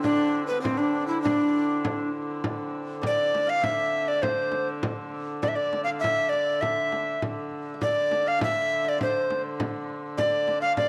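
A driving medieval dance with an ancient feel, in a straight 2/4, cut from a longer piece and running just under 11 seconds, with a short opening section giving way at 2.4 seconds to a longer second one. A breathy, bright tenor recorder carries the melody up front with a tongued chiff, while a shimmering hammered dulcimer rings in the background on a second line, a nasal, reedy hurdy-gurdy holds a low drone, and a close, dry frame drum is struck with hard hands. The sound sits in a small room with a wet echo-chamber reverb.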